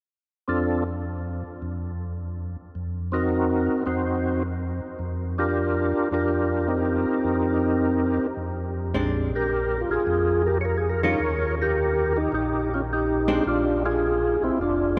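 Bluesy and greasy, this swung jazz excerpt at 106 BPM sets a gritty, overdriven tonewheel organ up front on the melody, its chorus vibrato and slow rotary speaker colouring the line, while a second, round and dark tonewheel organ carries the bass through a slow rotary speaker of its own. At 8.9 seconds the music settles into Bb mixolydian and a clean, picked hollow-body jazz guitar enters with compressed accompaniment over chords moving from Bb9 to Eb7 and Bb7. A cathedral-like reverb with a long 6.5-second tail bathes the whole band in a church or concert-hall space.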